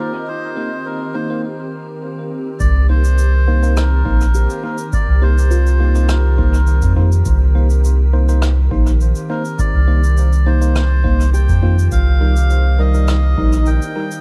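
An echo-heavy, small-room mix gives this hazy, meditative slice of ambient dub a drifting feel. A reedy, breathy melodica carries the melody over a dark, detuned organ-like pad in chorus and reverb, with a ringing steel handpan tracing arpeggios in the background and clean tine electric piano stabs run through a phaser; the melodica, handpan and piano all trail dub echo. A reversed, granular texture glints bright at the start and again near the end, and after a short break the groove arrives at 2.6 s: a round, tube-saturated sub bass sits up front, a tape-warm electronic kick stays in the background, and a brushed shaker and rim click with a rolled-off top fill out the rhythm.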